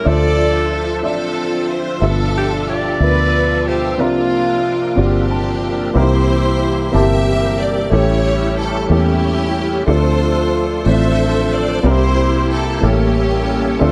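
Gospel in a slow 6/8 at 61 BPM, this short cut from a longer piece feels soulful and jubilant, moving through rich chords from Dm9 and G13 to C9sus4 before settling on C7, A7 and Dm7 and closing on A7b9. A bright, present alto saxophone carries the melody with light vibrato and a subtoned pop-style tone, singing from the top until 5.3 s. Alongside it, a lush, close studio string section plays a focused, bowed melody with vibrato, while a dark, woody upright piano accompanies with audible action noise and a slightly detuned, intimate character, adding a fill from 5.0 to 6.0 s. A reedy tonewheel organ holds sustained chords further back, lightly overdriven with chorus vibrato, key click and a slow rotary speaker. Underneath, a round, foam-muted fingered electric bass sits up front with a direct, amped sound, and the whole mix is dark and warm, set in a moderate concert hall reverb.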